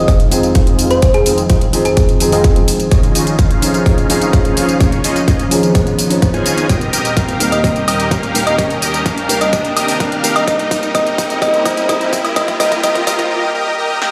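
A dense, compressed supersaw riff dominates this powerful, anthemic stretch of festival progressive house, its huge detuned sawtooth wall pumping against the punchy, up-front electronic kick while a low-pass filter sweep shapes it across the whole build-up. Beneath it, a felt-muted upright piano plays soft, mellow accompaniment with a dark, intimate tone, also pumping with the kick and trailing digital delay echoes. A lush unison pad holds sustained chords in the background, its bright detuned layers colored by chorus, phaser and a vintage 12-bit sampler grit, and it too is filtered and sidechained. A round, tine-like synth pluck with a thumb-piano character carries the melody, first until 2.5 seconds and again from 7.5 seconds, its gentle warbling tone thickened by chorus and delay. The big-room kit adds a punchy snare, metallic hats, tambourine and woodblock, a drum fill runs from 6.7 seconds, and a riser builds in the background from 1.7 seconds as the chords move from Fm7 through Dbadd9 and Eb to Bbmadd9. 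The mix sounds as if played through a big sound system in a bare stone room, lending the cut from a longer piece a hard, echoing edge.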